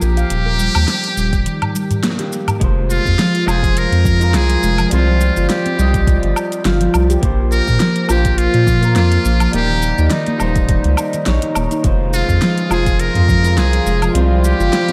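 A buzzy, metal-muted trumpet carries the melody with light vibrato and a soft attack, its tape echo drifting through a dreamy hall reverb in this meditative, hypnotic organic downtempo piece in F minor at 104 BPM with a gentle 16th-note swing. Beneath it, a ringing stainless-steel handpan plays soft-fingertip arpeggios, also touched by tape echo, while a round, deep analog bass sits up front with fast attack and long sustain. A deep house kit of fat snare, metallic hats, shaker and woodblock ticks along with a tape-warm layered kick that arrives at 1.3 seconds, and a small, dry udu adds close accents during a brief break where the band hits together. From 2.6 seconds a slightly broken-up, lo-fi electric guitar through a small old amp joins with picked accompaniment that pumps with sidechain and carries its own tape echo. Near the end, at 11.8 seconds, a distant, reedy string section with gut-string tone and 12-bit sampler grit adds sustained chords as the progression cycles through Fm, Csus4, Bbsus2 and Eb in this excerpt cut from a longer piece.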